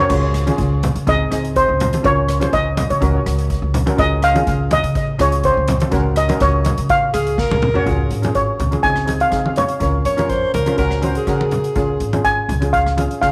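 A straight calypso groove in 4/4 carries this sunny, carefree snippet, with a mellow, shimmering lead steel pan touched by tape echo singing the melody over darker cello pans, a growly pizzicato upright bass, a boomy street-band drum kit and bright, low-tuned congas, while a drum fill at 7.4 seconds marks the turn to the second section and a subtone alto saxophone, also with tape echo, adds a soft second line from 7.1 to 12.1 seconds, all set in a small, lightly reverberant room.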